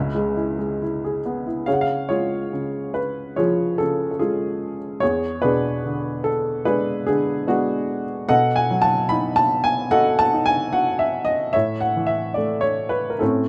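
Close, detailed microphones and a touch of light reverb put an upright piano up front, so its woody tone and audible action noise come through in an intimate, natural sound. This melancholic, wistful classical piece for lyrical solo piano moves at about 73 BPM in 4/4, with uneven beats and a rubato feel that keeps the pulse elastic. The piano alone carries the music across a range from C#2 to B5, and its short sustain lets each chord fade quickly. After a brief opening on C#m7, a new section begins at 1.7 seconds on C#, passing through E7 and B7 before settling on A69 at 11.5 seconds. The recording is cut from a longer piece, ending at 13.5 seconds.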